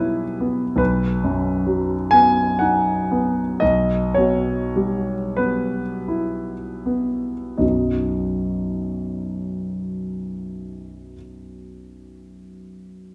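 A clear concert grand piano plays alone in a nostalgic, dreamy Romantic nocturne in B major, unfolding in 6/8 with generous rubato at a slow pulse of roughly 24 to 49 dotted-quarter beats per minute. The opening phrase eases back in tempo through its first 7.6 seconds, sitting on a B bass beneath harmonies that move between E minor and B major before settling on B as a contrasting passage begins. The piano's natural tone pairs deep bass with a short sustain, heard up front against the lush reverb of a recital hall in this brief fragment cut from a longer piece.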